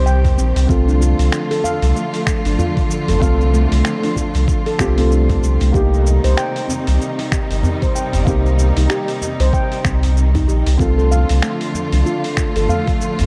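Organic downtempo at 95 BPM in 4/4 with a swung sixteenth feel, hypnotic and earthy, moving between Cm and Dm in this 13.3-second excerpt. A round, up-front sine sub bass with tube saturation and sidechain pumping anchors a gritty sampler-style kit of finger snaps, hi-hat and shaker and a thumpy electronic kick, both overdriven, along with a very quiet djembe with metal rattles, while ringing, meditative handpan arpeggios echo through digital delay. Lush bowed strings with vibrato hold sustained chords and pump with the sidechain, and a soft, felt-muted upright piano sits in the background, its audible action noise and delay adding an intimate, mellow texture inside a light reverb and studio ambience.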